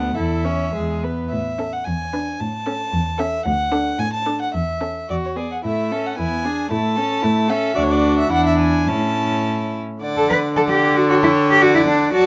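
Classical-period string quartet, a quick and rubato movement in A major and 2/4 at roughly 101-118 BPM, cheerful and spirited, heard as a 12.3-second excerpt cut from a longer piece. The first violin carries the melody with a nasal, airy-bowed gut-string tone close at hand, the second violin adds a supporting line with light vibrato, the viola fills in accompaniment from a more distant position, and the cello anchors the bass up front, all four bowed by single players in a reedy period style. The harmony circles A, E7 and D through a long middle passage from 1.3 to 10.0 seconds before the opening material returns, all set in a dark, warm production with light reverb.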